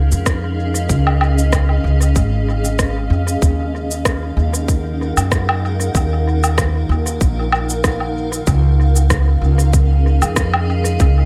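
A lightly swung sixteenth-note groove in four drives this deep, spacious ambient dub fragment, with a tight, overdriven electronic kick and tape-tinged electronic shaker, rim click and woodblock, the latter trailing dub echo. Up front, a woody, thumpy pizzicato upright bass on gut strings anchors the low end. Above it, a cloudy, detuned granular pad with slow attacks, a moving notch and its own reverb holds blurred, evolving chords, shifting from Dbadd9 to Ebm9 at 3.4 seconds and back at 8.5 seconds.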